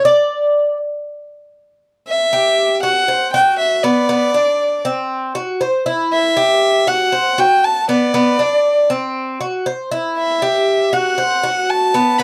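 A picked acoustic Cuban tres opens alone with metallic, partly octave-doubled arpeggios until a smooth, bowed solo violin enters at 2.1 seconds with a warm melody sung with vibrato up front, both carrying this relaxed, sunny Latin cut through chords such as Emadd9, Bm and C before it closes on Am69 at 12.2 seconds, all captured in a dry, close 1970s-style studio sound with light reverb.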